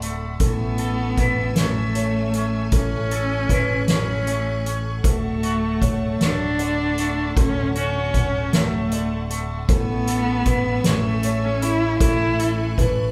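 Recorded live by a band in one large studio room with moderate reverb, this euphoric, hopeful post-rock excerpt at 52 BPM in 6/8, tuned to A4 = 444 Hz, sets a rich, nasal bowed cello melody with vibrato up front over lush, bright string chords in the background, clean twangy electric guitar arpeggios with harmonic tremolo, mellow felt-muted upright piano arpeggios with audible action noise, a growling overdriven picked bass, and a roomy soft-mallet drum kit with a fat snare and boomy kick, as the harmony moves from Amaj7 to Dmaj7 and back.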